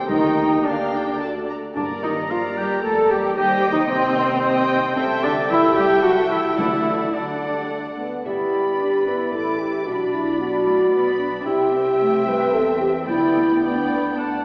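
A wet, reverberant scoring-stage sound heard from further back in the room, with a small-speaker quality, frames this restless, dramatic classical-period movement for symphony orchestra in a quick triple metre, cut from a longer piece and turning from minor to major at 5.0 s. Veiled, muted chamber strings carry the music: violins share the melody and a second line, while violas play accompaniment and cellos and double basses hold the bass, all bowed with vibrato alongside a mellow French horn section sustaining chords. A distant solo oboe adds another line, timpani with calf heads sound in the background in brief bursts, and an airy, hollow small flute group enters at 8.2 s.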